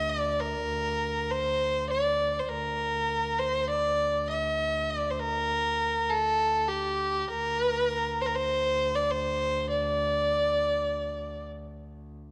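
Longing and melancholic, this brief cut from a longer Arabic maqam ensemble piece unfolds in free, unmetered time. A single bowed violin carries the melody up front, its smooth, even line singing with vibrato across a range from G4 to E5-47c, and it falls silent at 11.5 seconds. Beneath it, one bowed double bass holds a close, earthy drone on D2, its airy bow and light vibrato lingering until 12.2 seconds. Both players sound clear, and a moderate concert hall reverb with a 2.0 s decay gives the pair some space. Over the whole recording lies the character of worn, old cassette tape, whose warbly pitch drift adds a faded, wavering quality.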